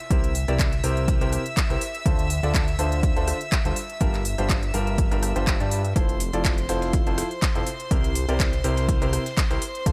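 Piano house at 123 BPM with a soulful, bittersweet mood, this excerpt sets a clear, intimate baby grand riff with audible action noise and dub echo over a fat sawtooth analog bass with tube saturation and a moving filter sweep, a punchy overdriven kick up front, crisp house hats, handclaps and rim clicks, and bright, earthy chamber violins holding sustained chords with light vibrato, all but the drums pumping to the sidechain, while a very quiet, gritty sampler-style kit with a fat snare slips in at 6.0 seconds, everything dry as the chords move from C7 through Dm7, Gm7 and Fmaj7 back to C7.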